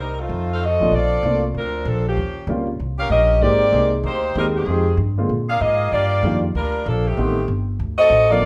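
A brisk swing feel at 192 BPM in 4/4 drives this joyful, brassy big band excerpt in Bb major, cut from a longer piece and played live together in one large studio room with a wet reverb. A tight saxophone section carries the melody up front from the start, smooth on top with light vibrato, over a woody, thumpy pizzicato upright bass, and a natural-sounding baby grand piano adds accompaniment from 0.8 seconds. The harmony moves through lush extended jazz chords, from Bbmaj9 and Eb13 to a closing D7b9.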